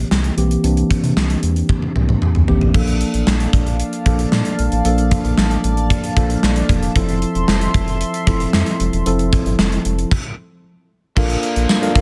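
A gated 80s drum kit with a tight kick, bright cymbals and a big, airy room sound drives this moody, nostalgic 1980s-style pop excerpt at 114 BPM, over a mellow tine electric piano and a round, deep analog bass, with a fill from 1.7 to 2.7 seconds ushering in a shimmering, chorused pulse-width pad across chords moving from C7 to Bbmaj7 and Fmaj7, then a stop at 10.1 seconds before a bright, overdriven electric guitar with subtle chorus enters at 11.2 seconds.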